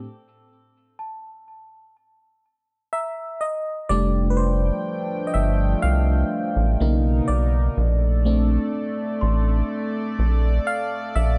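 A glassy, bell-like FM electric piano with chorus leads this romantic, smooth contemporary R&B excerpt in F major at a slow 62 BPM, playing over a stop alongside a delicate, sweet celesta touched with delay before taking a solo from 3.9 seconds. At that point a rubbery, bouncy square bass sits up front and a shimmering, retro pulse-width pad with chorus holds sustained chords, moving through F69, Bmaj7 and Bbmaj7. The production is dark and warm, set in digital ambience.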